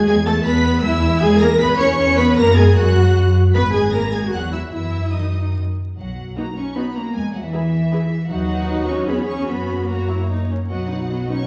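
A string orchestra opens together at 0.0 s with a quick, cheerful classical-period movement in triple time, its rubato giving the spirited lines a flexible, breathing pulse. The violin section carries the melody with a rich, expressive tone, soft attacks and vibrato, reaching high into its range. A second violin line joins at 0.1 s, clear and intense yet set at a distance. Beneath them, the violas supply a focused, close accompaniment that sits up front, while the cellos give a smooth-topped bass and the double basses add an even, warm foundation that also sits forward. The passage moves into a contrasting second section at 6.0 s, and the whole piece, cut from a longer work, is heard from further back in a reverberant recital hall, with a layer of vinyl crackle over the lush ensemble sound.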